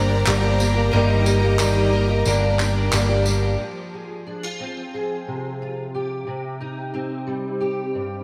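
A round, up-front picked electric bass anchors this bittersweet, yearning indie folk piece at 90 BPM, alongside a shimmering, octave-doubled twelve-string acoustic guitar, a dark fingerpicked steel-string acoustic guitar with ensemble chorus, bowed strings sustaining vibrato chords in the background, and vintage, band-limited handclaps with jingly tambourine, set in a dreamy hall-reverb mix over Gm and Eb/G until the other parts fall away by 3.6 seconds, leaving the steel-string guitar alone over Fm and Cm until 8.2 seconds.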